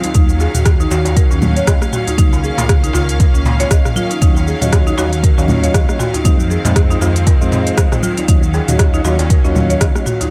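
Hypnotic and driving, this afro house cut from a longer piece moves at 118 BPM in Eb dorian with a swung sixteenth feel, cycling through Ebm9, Db69 and Fm7 as an up-front, tape-warm electronic kick and a dark, rumbling detuned saw bass with tube saturation anchor a produced afro-pop kit of smooth hats, rim click, shaker and toms. Background congas with soft hands and a vintage, band-limited djembe with metal rattles add texture, while a woody, buzzing marimba struck with hard mallets plays low-pass filtered arpeggios through dub echo over lush, bowed symphonic strings holding sustained chords, both pumping with the sidechain. At 4.2 seconds a lightly overdriven tonewheel organ joins with key-click stabs through a slow rotary speaker and dub echo, all set in a small room ambience.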